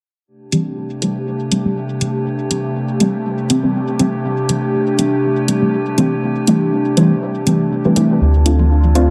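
Nocturnal and cavernous, this dub techno excerpt in A minor moves at 121 BPM in 4/4 with a light swing on the sixteenths. A metallic, inharmonic FM drone surfaces first at 0.3 seconds, eerie and wave-folded, carrying its own reverb along with chorus and phaser. Deep, mellow chord stabs arrive at 0.5 seconds alongside an overdriven electronic hi-hat dulled by a low-pass filter; the stabs pluck and decay through chorus, phaser and dub echo while a filter sweep runs across them, shifting from Am7 toward Dm7 at 8.2 seconds. An airy, breathy pad with a detuned, warbling vintage character holds sustained chords from 0.7 seconds, its slow attack softened further by chorus. At that chord change a pure sine sub bass enters on D2, clean and dark and sitting up front, and analog electronic toms tap briefly in the background near the end. The whole mix is echo-heavy, bathed in a moderate spring reverb that deepens the sense of a dim, hollow space.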